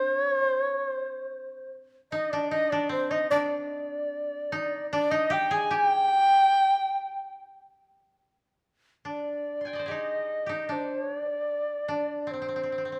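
A moderate recital-hall reverb surrounds this short, austere and calm passage of Japanese chamber music, cut from a longer piece and played with a free, rubato feel. Up front, an end-blown bamboo shakuhachi carries the melody with a bright, reedy, airy tone, crisp chiffing attacks and vibrato. Beneath it, a koto played with fingerpicks adds a softer, mellow, woody second line, and the music moves into a new section at 9.1 seconds.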